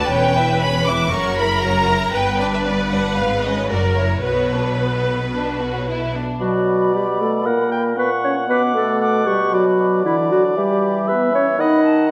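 A quick, urgent classical-period movement for symphony orchestra in B minor at 116 BPM opens with the strings alone: a focused violin section carries the melody over a smooth, distant second violin line, up-front violas, lush cellos and intense double basses. At 6.4 s the strings drop away and the winds take over, with a mellow cor anglais, pure silver flute and clarinet carrying second lines above a bassoon accompaniment and sustained chords from a French horn section that sits up front. A moderate scoring-stage reverb gives this dramatic fragment of a longer piece its spacious glow.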